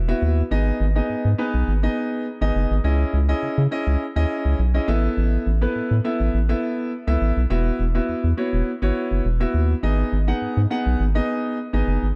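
A straight 4/4 pulse at 103 BPM drives this confident, bittersweet dance-pop drop, cut from a longer piece, where a round, deep analog bass with a fast attack and folded-wave bite sits up front beside an open concert grand piano accompaniment, moving through Esus2, G#m, C#madd9 and Asus2 in a dark production with light reverb and small-room ambience.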